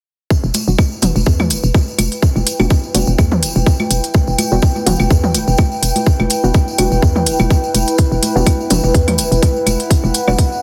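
A tight, up-front electronic kick drives this hypnotic, quirky minimal techno cut at 125 BPM in 4/4, with a 55% swing on the 16ths. Crisp electronic hats, a jingly, close tambourine, dub-echoed congas, claves and toms, and a hollow, bouncy FM bass that pumps with the kick fill out a groove on a single Em7 in E minor. A warbling, nostalgic tape-like pad with chorus and its own reverb floats above while a muted, detuned dub chord stab with chorus and echo sits in the background, all under a heavily compressed, radio-like sound with light reverb.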